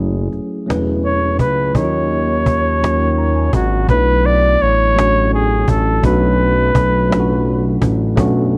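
A mellow, slightly out-of-tune tine electric piano with light overdrive opens this slow 6/8 R&B piece at 56 BPM, alongside a smooth, gliding sawtooth synth bass with portamento and vibrato, and a snappy, close and dry cajon enters at 0.3 seconds. A warm flugelhorn carries the yearning, sultry jazz-style melody from 1.0 seconds, its scooped notes and soft attack trailed by slapback echo, while the piano adds a fill at 2.8 seconds as the chords move from F#m9 through D#m9 to Bm11. The recording sits in a small room and has the worn, warbling pitch drift of old cassette tape.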